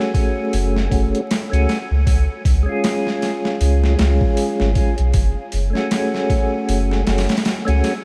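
Trip hop with a smoky, melancholic mood and a lazy swing, cut from a longer piece and steeped in a huge ambient reverb and vinyl crackle for a dreamy haze. A mellow, dark tonewheel organ carries the accompaniment with its percussive attack, slow rotary speaker, tremolo and tape echo, moving from F#madd9 to C# and back, while a deep, round dub sub bass enters at 0.5 seconds. Up front sits a gritty, compressed boom bap sampler-style kit with a thumpy kick, medium-tuned snare and hi-hat, overdriven and re-recorded in a small room.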